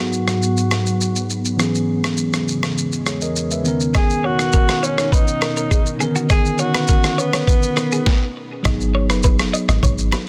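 Sunny and breezy, this afrobeats excerpt moves at 102 BPM in a straight 4/4 in B major, with a filter sweep running over its opening section and a brief stop just before 8.7 seconds. A breathy tenor saxophone carries the melody in an intimate, whispered jazz style with vibrato and scooped notes. Beneath it, a bell-like tine electric piano supplies clean accompaniment, and an ethereal pad holds sustained chords through ensemble chorus. The gritty, sampler-style drum kit sits up front with a thumpy kick and a high-tuned snare, and a twangy twelve-string electric guitar riff enters at 3.9 seconds. When the next section arrives at 8.7 seconds, a deep, round log drum bass joins, along with close acoustic congas and bongos in the background, as the harmony returns to G#m7 under a dense, heavily limited master with light reverb.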